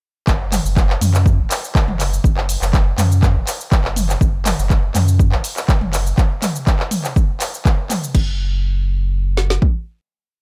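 Driven by a four-on-the-floor kick at 122 BPM in a straight 4/4, this short afro house piece carries a spiritual, hypnotic mood from its drop at 0.3 seconds. The punchy kick and woody snare sit up front, joined by a layer of programmed hats and backbeat with dark hi-hats, open hat, cabasa, handclaps, low toms and crash, all re-recorded in a small room for an electronic, produced feel. Beneath them, a round sine sub bass moves in a dotted rhythm between F#1 and F#2, its fast attack and sustained, mellow tone pumping through sidechain compression. The percussion layer drops out at 8.2 seconds, leaving the kick, snare and bass to carry the final note until the bass stops at 9.6 seconds and the drums at 9.7 seconds. The mix is dry, with little reverb, keeping the groove close and direct.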